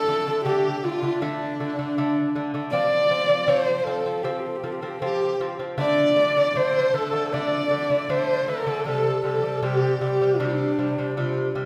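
Mongolian folk in a solemn, vast mood, this short cut from a longer piece features an expressive, husky horsehead fiddle up front on the melody, bowed with vibrato and portamento. Alongside it, a large bamboo dizi with a buzzing membrane adds an airy, hollow second line, while a delicate nylon-strung lute fingerpicks low arpeggios through a slapback echo. A recital hall reverb places the ensemble further back in the room, giving the sound a spacious, distant cast.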